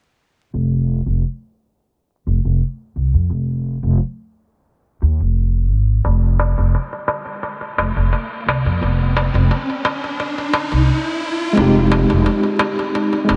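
A dreamy, reverb-soaked mix with vinyl crackle and a dulled top end frames this dark, melancholic trip hop excerpt in F minor, moving at 87 BPM with a light swing. A woody, thumpy pizzicato upright bass on gut strings carries it from 0.5 seconds under a filter sweep. It is joined at 6.0 seconds by a crisp, small metal-shell darbuka played with hard hands, and an electronic riser builds in the background from 7.4 seconds. At 11.5 seconds a worn, slightly out-of-tune tine electric piano arrives up front with tremolo and tape echo, settling onto an Fm9 chord.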